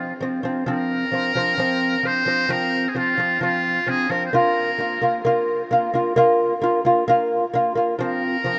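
Windswept and vast, this short excerpt of Mongolian folk music sets a buzzy, metal-muted trumpet melody with light vibrato and a soft attack over mellow, fingerpicked lute arpeggios on doubled gut strings, both heard throughout its 8.6 seconds and bathed in a huge ambient reverb.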